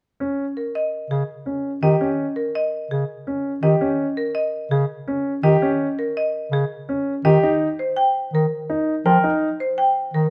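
Meditative yet urgent, this minimalist classical pattern piece moves at a brisk 166 BPM in an uneven 5/4 with a straight feel. A concert grand piano opens at 0.2 seconds with arpeggios in its middle register, its tone deep and open with a long sustain. A marimba struck with hard mallets carries the melody from 0.6 seconds, its rosewood bars giving a woody, percussive, slightly vintage and band-limited sound that sits up front. A mellow bass clarinet joins at 1.1 seconds with a smooth-topped accompaniment, played in a classical style. The harmony stays unanchored until an Eb chord arrives near 7.4 seconds. A moderate large-studio reverb gives the brief passage a sense of space, and it ends as a fragment cut from a longer work.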